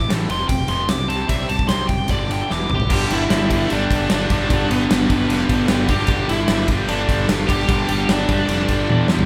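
A live-in-one-room sound with light reverb gives this heavy, driving hard rock excerpt a raw, immediate feel at 150 BPM in straight 4/4. The gated 80s drum kit sits up front, its bright stone room, tight kick, medium-tuned snare and bright cymbals punctuated by fills at 2.5 and 8.9 seconds. Beneath it, the fuzz fingered electric bass growls with punchy overdrive, while a tight distorted guitar and a very quiet overdriven semi-hollow guitar play riffs together, and a very quiet overdriven tonewheel organ holds gritty, percussive chords through a fast rotary speaker. A bluesy overdriven lead guitar opens with a solo over chords of F5, C5 and G5, then carries the melody throughout, and from 2.7 seconds a lo-fi lead through a small cranked amp adds a second line in the background. At 2.9 seconds the section shifts as a double-tracked, scooped high-gain guitar joins the riff.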